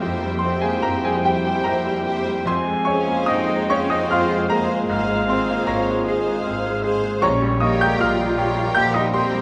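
A clear, up-front baby grand piano carries the melody across this passionate, tragic classical fragment in 3/4 with rubato, joined by a distant violin section also on the melody and a dark, soft-attacked cor anglais and lush second violins on a second line, over a very quiet viola section, a background French horn section holding sustained chords, and cello and double bass sections bowing the bass in a wet concert hall.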